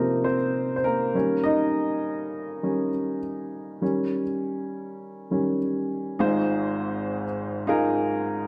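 A straight 4/4 pulse at 101 BPM carries this anthemic, warm pop piece in Ab major, where a solo baby grand piano, intimate and up front with audible action noise, plays across a broad register from Cm7 to Eb7 and settles on Ab6 at 6.2 seconds, all bathed in a wet, large studio reverb.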